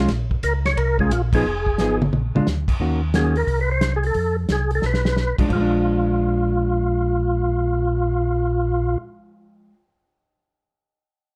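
This dark, club-room recording carries a moderate reverb and a close, late-night feel, setting a bluesy soul jazz organ trio swinging at 178 BPM in 4/4. A mellow, round tonewheel organ holds down the bass line in the low register, its clean tone colored by chorus vibrato and a slow rotary speaker. Above it, a second tonewheel organ takes the melody from 0.4 seconds, lightly overdriven and percussive with second-harmonic percussion, shimmering through its own chorus vibrato and slow rotary. A hollow-body electric guitar, clean and fingered, comps underneath, pausing at 3.3 seconds before returning at 5.4. The acoustic soul kit sits up front with a tight kick, medium-tuned snare and smooth, shadowy cymbals, marking a band accent at 1.3 seconds and drum fills around the turns. The harmony wanders through minor sevenths and dominant chords, from Bbm7 through Ebm7 and back to Bb7, before this fragment of a longer piece cuts off.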